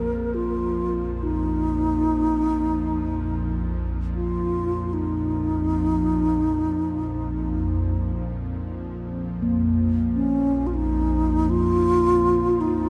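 Meditative and spacious, this world-flavored meditation music drifts through a short passage cut from a longer piece. Up front, a bass flute carries the melody between Db4 and Bb4 with an airy, expressive tone, gentle vibrato and tongued notes, colored by a tape echo. Alongside it, also up front, an ethereal pad holds a low drone from Bb1 to F2, its detuned sawtooth and triangle layers blended in unison with a breathy noise layer, a slow attack, a long release, ensemble chorus and its own reverb. Further back, a bronze singing bowl struck with a felt mallet rings softly on Bb3, its metallic hum shimmering with slow beating. All three parts sound together for the full 12.9 seconds, set in a wet cathedral reverb with a 4.3-second decay that gives the music a deep, lingering sense of space.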